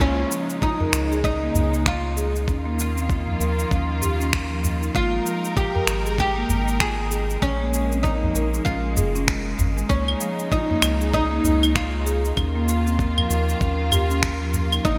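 A plectrum-plucked oud sits up front with a deep, double-strung voice, carrying the melody through a digital delay in this mystical, meditative organic downtempo piece cut from a longer work, moving at 97 BPM in 4/4 with a 16th-note swing. Beneath it, a rich studio string section holds sustained, bowed chords with smooth vibrato and a sidechain pumping effect, while a marimba played with soft mallets on padauk bars traces mellow, woody arpeggios that also pass through a digital delay. A round analog bass, dark and sine-like with tube saturation and sidechain pumping, anchors the low end. The drums pair a gritty, thumpy sampler-style kick, re-recorded in a large room, with layered electronic cabasa, finger snaps and claves pushed forward under gated reverb, and a small udu plays in the background from 0.8 to 14.7 seconds. The harmony circles through Db, Eb7(no3), Ab5 and Bbm7, all bathed in a lush hall reverb and a bright 1980s-style digital production.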